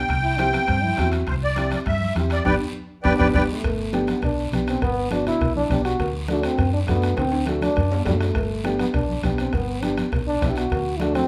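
A sunny, danceable cumbia in G major at 203 BPM opens with a reedy, shimmering musette accordion up front carrying the melody, over a round, dark hollow-body electric bass and a bed of soft-beater bombo, soft-handed congas, raspy guiro and ringing metal-shell timbales and cowbell. A dark trombone adds a brief second line at the start, while a clear, woody upright piano, slightly detuned and boxy with long sustain, fills in the accompaniment from 0.4 seconds. After a band accent and drum fill close the opening passage, the accordion drops out at 3.4 seconds and the trombone takes over as soloist, its punchy tone shaded by light vibrato, scooped notes and a smooth top. A second drum fill arrives partway through the solo as the chords move from C through G and D7, and the bombo and congas sit in a small-room sound beneath a moderate, large studio reverb. The bass stops at 11.2 seconds, just before the excerpt cuts off mid-piece.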